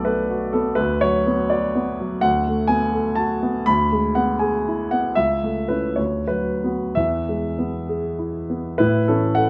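This classical romantic character piece for solo piano unfolds in 6/8 with a freely breathing rubato, carrying a warm and hopeful mood. The grand piano, the only part, sounds warm and natural, placed up front, and it covers a span from deep bass notes to a bright upper register. Its harmony begins on a Bm7 chord and moves through colours built over a D in the bass, including E7/D, then through A/C#. The phrase settles on an E chord at 7.0 s before coming to rest on A at 8.8 s. A moderate recital hall reverb surrounds the instrument, lending the short fragment, cut from a longer piece, a sense of open, resonant space.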